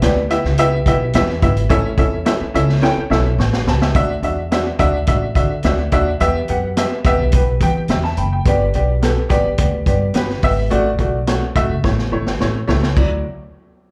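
Joyful and warm, this uptempo 1960s-style soul cut moves at 107 BPM in D major, caught live through a club PA with the room's ambience but little reverb. A clear, worn, slightly detuned upright piano with short sustain and slapback echo carries the accompaniment over a thumpy, gut-strung pizzicato upright bass and a punchy vintage drum kit with dark cymbals and a rolled-off top, all sitting up front. The drums play fills at 2.8 and 11.8 seconds, and the piano adds its own fill at 7.6 seconds, over changes that open on Em and A before moving to Dadd9.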